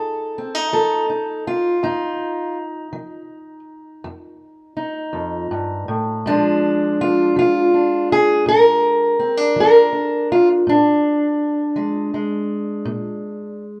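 A dark, up-front parlour steel-string acoustic guitar, fingerpicked alone from F2 to Bb4, opens this rollicking, gritty acoustic country blues cut from a longer piece: at 54 BPM in a straight 12/8, tuned to A4 = 441 Hz, it rests on F7 before moving to Bb7 at 6.2 s, with moderate reverb from a large studio where the playing was captured live in one room.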